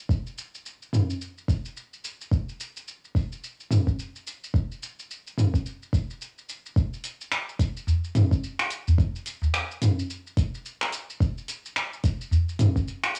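This short cut from a longer piece has the close, homemade feel of a cassette recorded in a small room, with a light reverb hanging around the parts. It's a meditative, warm downtempo groove in 4/4 with a lazy swung shuffle on the sixteenths, built entirely from percussion. A deep, layered electronic kick sits up front with an overdriven edge, alongside a produced deep house kit of finger snaps, hi-hat, shaker and toms that carries the same grit and small-room re-recorded character. Around 6.8 seconds the piece moves into a second section. At 7.9 seconds a small acoustic udu enters, close and dry and placed up front, adding an earthy tone until 12.4 seconds, shortly before the kit plays on to the cut.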